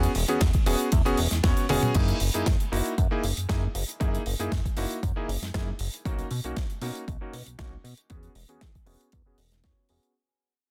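A straight 4/4 nu-disco groove at 117 BPM in F# mixolydian, this sunny, feel-good excerpt pairs an overdriven, punchy electronic kick entering at 0.4 seconds with a tight, dry funk kit of crash, hi-hat, ride, medium-tuned snare and toms, a retro, nasal chorused synth bass, and a clangy, vintage electric grand piano that pumps through a low-pass filter and analog delay, opening on a drop over E6 with a drum fill at 1.7 seconds before the piano's filter sweep and a fade-out from 1.9 seconds carry it through F#13 and Bmaj9 and back to E6 in a dense, heavily limited modern master with studio reverb.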